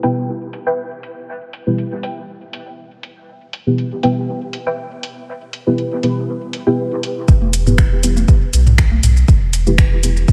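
A deep, mellow chord stab sits up front through this nocturnal, meditative dub techno excerpt in E minor at 120 BPM, its dark, detuned tone washed in chorus, phaser and dub echo alongside a muted, filtered stab riff that sweeps until 6.8 seconds over a deep house kit of finger snaps, metallic hats and shaker, before a round sub bass and a tape-warm kick arrive at 7.3 seconds, with overdriven congas and toms following at 7.4 seconds, all in a light, digital ambience.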